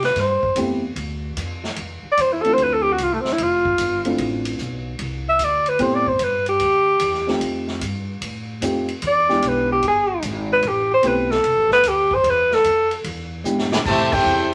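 A sultry big band swing excerpt in A minor at 149 BPM opens with an up-front alto saxophone soloing with vibrato and scooped notes, backed by a growly pizzicato upright bass and a natural-sounding drum kit with a punchy kick and medium-tuned snare, while a woody, slightly detuned upright piano joins at 0.6 seconds. The harmony moves through minor sevenths and an E7#9 turnaround in a studio room with moderate reverb. After a drum fill at 13.5 seconds, a clear trumpet section and a bright, close-miked trombone section enter at 13.7 seconds for a band accent just before the cut.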